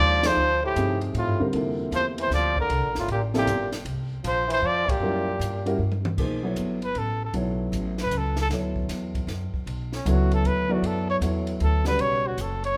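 A warm, up-front trumpet with vibrato and a soft attack carries the melody over a bright, roomy trombone second line, intimate grand piano with audible action noise, and a woody, thumpy pizzicato upright bass, joined at 0.2 s by a dry cocktail drum kit with dark cymbals, a high-tuned snare and a punchy kick, in this cool, spiritual modal jazz excerpt at 155 BPM in swung 3/4. The trombone drops out at 5.8 s before the music settles into B minor at 6.2 s for a trumpet solo within a large studio reverb.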